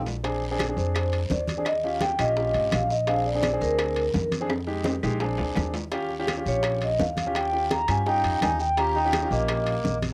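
A home cassette recording in a small, moderately reverberant room frames this lively, sophisticated Afro-Cuban jazz fragment at 169 BPM in a straight 4/4, moving through Bb7, Eb7 and Fm7 chords. A mellow, ringing vibraphone with soft mallets and a tape-colored tone carries the melody, pausing after 4.3 seconds while a drum fill runs to 5.9. A reedy, breathy melodica adds a dark second line near the close, and an intimate grand piano with audible action noise and long sustain comps beneath a thumpy, woody pizzicato upright bass. Tight, high-tuned bongos and bright, low-tuned congas sit in the background with dry, woody claves and a raspy guiro, while compressed, saturated timbales ring out alongside them.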